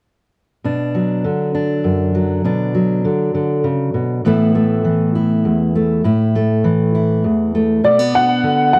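Folk in 6/8, with an anthemic, warm mood, cut from a longer piece: a full-bodied fingerpicked steel-string acoustic guitar sits up front from 0.6 seconds, moving from Bm to Asus2 and back. At 7.8 seconds a woody, slightly detuned upright piano enters with a smooth, vintage melody in its upper register, touched by slapback echo. The sound is a dry, close 1970s-style studio recording with light reverb and small room ambience.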